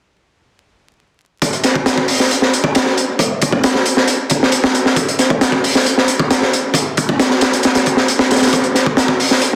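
A crunchy breakbeat drum kit kicks in at 1.4 seconds, its tight kick, high-tuned snare and hi-hat sitting up front with a dark, saturated, gritty tone and a rolled-off top, while filtering thins the low end of each drum and the room. The groove is straight and funky with a swaggering feel, cut from a longer piece and running until 9.6 seconds. A lush hall reverb, a dense, heavily limited modern master and a layer of vinyl crackle frame the sound.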